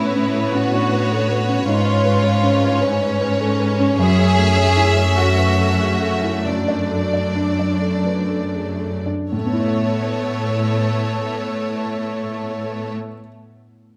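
From the first moment, a felt-muted upright piano, soft and intimate, sounds together with a bowed string orchestra in this tender, moving film-score passage cut from a longer piece. It drifts in a rubato 6/8 at roughly 39 to 53 beats per minute in A major. A clear, focused violin section carries the melody high above. A warm, smooth second violin line and a lightly vibrating viola section fill the middle. Underneath, a rich, lush cello section sits up front on the bass. The harmony moves from Aadd9 through C#7/G#, F#m7 and D/F#, slowing between 2.8 and 9.3 seconds before returning to Aadd9. The strings stop at 12.9 seconds, leaving the mellow piano alone until 14.0 seconds, all captured close and in detail within a moderate scoring-stage reverb.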